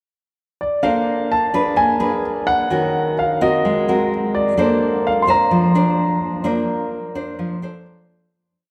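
Bathed in a long cathedral reverb that places it in a church or concert hall, this short, relaxed and romantic bossa nova in Bb major moves at 128 BPM in a straight 4/4. Up front, a nylon-string guitar with a deep classical tone and audible finger squeak is fingerpicked as thumb bass and syncopated plucked chords through Bbmaj9, Bb7b9, Ebm7 and Ab9. Beside it, an intimate grand piano with natural long sustain and audible action noise sings a motif-based melody in sentence-like phrases from 0.6 s, and the whole piece fades out from 6.4 s to its close at 8.3 s.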